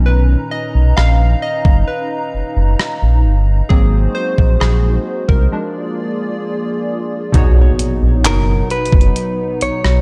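A dark, digitally ambient production frames this longing, sensual contemporary R&B excerpt at a slow 66 BPM in 4/4. Round, detuned analog keys with chorus take a solo over a hollow, flute-like pad with ensemble chorus and an up-front gliding synth bass with portamento, as the chords move from Bmaj7 through Ab7 and Bb7 to B, and a crisp 8-bit drum machine with a thumpy kick, handclaps, hi-hat and rim click comes in at 1.0 s. After a break, a ringing, fingerpicked kora with delay sits in the background, a very quiet electronic impact sounds, and a clean, compressed electric guitar picks out the melody from 8.3 s.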